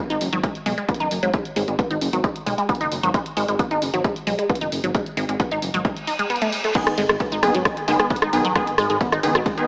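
Heard through a small-speaker sound bathed in lush hall reverb, this industrial, intense peak-time techno excerpt in G# minor drives along at 133 BPM, with an up-front layered electronic kick, an analog drum machine's rim click alongside its crash, hi-hat and ride pumping against the sidechain, a dark, rumbling detuned saw bass, and a squelchy resonant blip pluck riff coloured by phaser and tape echo, until a reverse cymbal at 6.0 s ushers in the drop at 6.8 s, where aggressive, thick rave stabs arrive with chorus, cassette tape grit and tape echo, and a very quiet, nasal swarming drone creeps in at 8.0 s.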